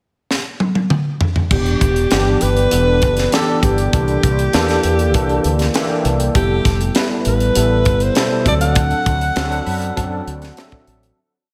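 A big arena sound with lush hall reverb frames this breezy, upbeat piece of polished 1980s jazz-funk pop, where a tight funk drum kit opens with a fill at 0.3 seconds before settling into a crisp sixteenth-note groove, a dark, round fretless electric bass with lush chorus slides through an agile syncopated line, a worn, lightly overdriven tine electric piano with analog chorus and slapback echo adds syncopated chord stabs and short fills, and a breathy, whispered alto saxophone with vibrato and scooped notes carries a motif-based melody over Em7, C13, Fmaj9#11 and D7 into the fade-out that begins at 8.8 seconds.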